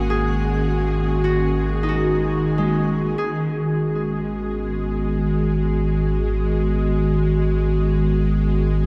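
A warbly, tape-like pad anchors this melancholic, serene ambient piece in G# minor at 78 BPM, holding sustained chords with a nostalgic lo-fi character softened by chorus and its own reverb. Beneath it sits a round, deep sub bass on G#1 with a touch of tube saturation, while a string-like, nasal drone with vibrato hangs in the middle register. A bright concert harp adds ringing, fingerpicked arpeggios through a delay until 5.8 s. A very quiet, twinkling granular texture with an octave-up shimmer sparkles above until 3.2 s, when the harmony settles onto G#m7. Everything is bathed in an enormous, wet reverb, giving the dark, warm mix a hazy, suspended feel, and the recording is cut from a longer piece.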